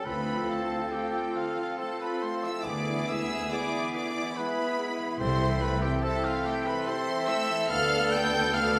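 Elegiac and melancholic, this rubato classical fragment in 3/4 sets a lush, bowed violin section melody high above a hushed web of flute ensemble, clarinet, oboe, a second violin section, bassoon, violas and mellow horn chords, with distant trumpet stabs and rich cellos and double basses anchoring the bass from 0.1 s, all bathed in the wet reverb of a scoring stage.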